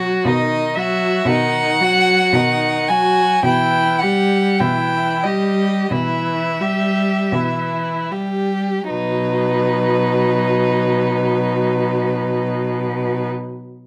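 Light reverb surrounds this string quartet recording. It is a slow, lyrical romantic movement in B major and 4/4, played with rubato at 36 to 62 BPM, and it slows down over its first 8.9 seconds before a second section begins. One violin carries the melody from 0.3 seconds, its tone warm and focused with a smooth top and vibrato, sitting a little louder than the rest. Beneath it a second violin plays an even second line with vibrato, and the viola adds a rich, soft-attacked, expressive accompaniment with portamento. The cello holds a low B as the bass, and the harmony moves from B to E minor over B and back to B in this excerpt from a longer piece.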